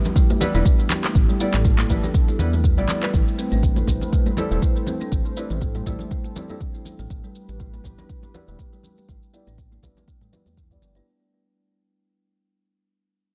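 Afro house at 121 BPM in 4/4 with a light 16th-note swing, this short excerpt cut from a longer piece feels driving and earthy, moving from E minor to A minor seventh and back to E minor. A dark analog pad opens at 0.0 seconds with moody, detuned sawtooth chords, slow in attack and long in release, thickened by chorus and sidechain pumping. Within the first half second the rest arrives: an up-front deep electronic kick, produced shaker and handclaps, close and dry ringing congas, and a rumbling, beating detuned saw bass that pumps under the kick. A woody, hollow kalimba plays thumb-plucked arpeggios roughened by vintage 12-bit sampler grit, low-pass filtering, delay and sidechain pumping. A felt-muted upright piano adds soft, intimate stabs through delay and a low-pass filter that sweeps across the whole passage. Studio reverb places the parts in a shared space, and the entire passage fades out over its length, with the kick stopping at 10.8 seconds.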